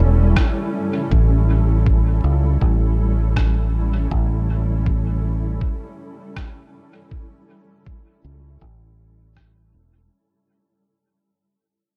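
A round, punchy fingered electric bass sits up front in this peaceful, spacious ambient dub fragment with a gentle swing, while a detuned granular cloud pad drifts on sustained chords with its own reverb, a muffled, pitched-down electronic kick thumps from 0.4 seconds, and a faint tape-warm rim click echoes in dub fashion, all in a dark production that fades out from the start.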